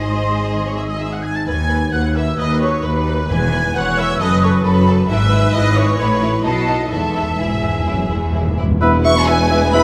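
Driven by a rubato 4/4 pulse, this restless, dramatic fragment of a fast romantic orchestral movement sets a distant, lush violin melody over a second violin line, clear viola accompaniment, a hollow, airy flute section, ringing harp arpeggios in the background and smooth cello and double bass, with timpani entering at 3.3 seconds and a timpani fill at 6.9 seconds before oboe, very quiet dark clarinet, mellow bassoon, roomy French horn chords, trumpet stabs and tuba bass join at 8.8 seconds, all bathed in a wet scoring-stage reverb.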